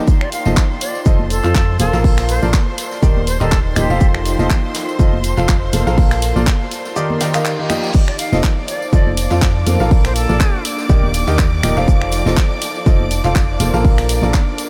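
A polished, lightly reverberant small-room mix opens this joyful, feel-good piano house excerpt, where a punchy, up-front electronic kick and a round, dark FM bass drive the groove beneath a present grand piano riff treated with subtle chorus and delay, while a clear violin section holds sustained chords and a warbling, lo-fi tape-like pad sits in the background, all pumping against the kick. A layered house drum kit of handclaps, finger snaps, hi-hat, ride and crash is joined by ringing tambourine and congas and a distant, very quiet brushed jazz kit with shaker and snare. A pure, bright silver flute carries the melody with delay from 0.2 to 4.1 seconds and again from 8.1 seconds, after the kick drops out at 7.0 seconds for a faint reverse cymbal swell that sets up its return.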